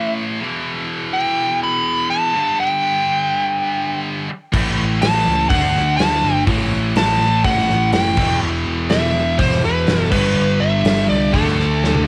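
Menacing and aggressive, this hard rock excerpt at 124 BPM opens with a smooth, overdriven lead guitar melody carrying a cassette-tape grain over a bright, scooped high-gain guitar riff, then at 4.5 seconds a dark, sludgy guitar, a growly picked bass and an up-front gated 80s drum kit with punchy kick and bright cymbals crash in, all set in a home-recorded studio ambience and capped by a drum fill at 11.8 seconds.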